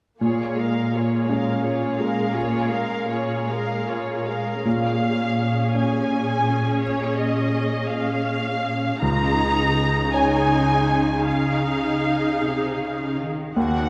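Cinematic, emotional film score in 6/8 and Bb minor, moving and bittersweet, unfolding with rubato at roughly 50-58 BPM in dotted quarters, cut from a longer piece. A bright, polished concert grand piano with deep bass and long sustain carries the accompaniment alongside a dark viola section and a rich, smooth cello section on the bass, while a violin section plays a soft-attacked second line until 4.7 s. From 4.7 s a lush violin melody takes over, expressive with vibrato and portamento, as the harmony moves from Bbm7 to Dbadd9 at 9.0 s, all bathed in a wet church reverb.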